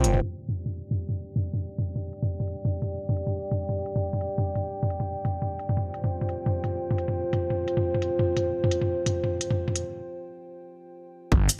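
A dark, nasal analog pad carries this heavy, tense half-time drum and bass excerpt at 173 BPM, holding detuned sustained chords that move from G5 to Fsus2 under a long filter sweep, coloured by chorus, 12-bit sampler grit and sidechain pumping. An organic electronic drum kit of smooth hi-hats, shaker and toms runs throughout with gated reverb. After a break from 9.9 seconds, a hard-clipped electronic kick lands at 11.3 seconds, where the swirling, phased detuned saw bass also sounds again after a brief moment at the very start, all framed by a bright 1980s-style production with a low-pass filter and moderate plate reverb.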